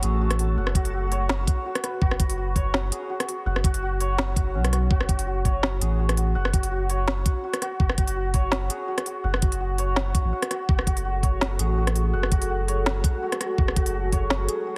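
Half-time drum and bass with a heavy, cinematic mood. Mellow, shimmering santur arpeggios carry vintage 12-bit sampler grit and tape echo over a thick, saturated sub bass, while an overdriven, woody-snared kit with crisp hats and a knocking kick sits up front, the kick entering at 0.8 seconds. After a brief break at 10.3 seconds, a moody, detuned analog pad with chorus and sidechain pumping joins at 10.7 seconds, all under a heavily compressed radio sound in this excerpt from a longer piece.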